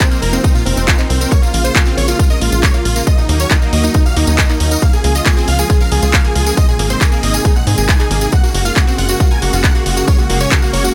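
Uplifting trance in a soaring, euphoric mood, this excerpt from a longer piece runs on a steady 4/4 pulse with a straight feel. A huge, detuned supersaw lead carries the melody, its airy noise layer and compressed, full-bodied sustain riding a sidechain pump. Underneath, a thick, warbling unison pad holds sustained chords with a slow attack, vintage chorus and a long release. A bright unison pluck spins arpeggios in the background through phaser, tape echo and a filter sweep. A punchy, tape-warm electronic kick drives from the start until 10.6 seconds alongside a layered house drum kit of handclaps and pumping hi-hats and a jingly acoustic tambourine, and a tight, dark sequencer bass enters at 0.2 seconds, while the dry mix stays loud and close over a chord cycle that moves from Fsus4 through Bbm7, Ebm, Db and Ab to Gbadd9.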